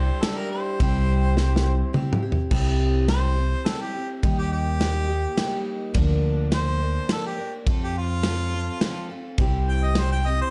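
A harmonica with a light vibrato and a punchy, roomy tone carries the melody from a distance, a slapback echo trailing its lines as it moves into a solo at 2.5 seconds that runs to the end of this short clip from a longer piece. It is a hopeful folk rock and heartland rock tune at 105 BPM in 3/4, set in C mixolydian, with the chords moving from Cadd9 and C through Eb, Bb/D and F before settling back on C. A picked twelve-string acoustic guitar provides full-bodied, shimmering, octave-doubled accompaniment, while a woody pizzicato upright bass sits up front in its low register. A natural country drum kit with a punchy kick and a medium-tuned snare comes in at 0.2 seconds, using crash, ride and toms, and plays a fill from 1.4 to 2.5 seconds that leads into the solo. Studio reverb wraps the whole arrangement in a dark, warm production that rolls off the top end.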